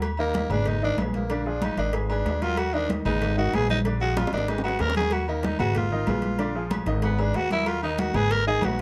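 A fiery salsa groove at 188 BPM opens with a woody, thumpy pizzicato upright bass up front, alongside ringing congas, tight high-tuned cowbell and bongos, and vintage metal-shell agogo bells and timbales sitting in the background. At 0.2 seconds a growling, raspy tenor saxophone takes a passionate, punchy solo, with a polished baby grand piano comping through the Abm and Bb7 changes. A drum fill arrives at 4.2 seconds, and the whole passage carries a dark production with light reverb, cut from a longer piece.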